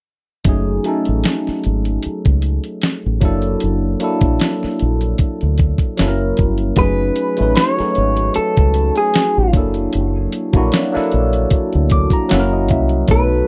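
A picked electric guitar through a small old amp, warm, slightly broken-up and compressed, takes the melody at 6.8 seconds in this introspective, sultry neo-soul R&B excerpt cut from a longer piece. Underneath, a barky tine electric piano with a phaser plays the accompaniment through a combo amp, bright and clean, and adds a fill from 11.5 to 13.1 seconds. A dusty, sampler-style drum kit lays down hi-hat, a thumpy kick and a fat snare with a gritty, compressed punch and a lightly swung sixteenth-note feel. A deep, foam-muted fingered electric bass sits round and dark beneath the harmony, which moves between minor-sixth-ninth, altered dominant and dominant seventh chords. The sound is dry and close, like a 1970s studio session, with every part up front.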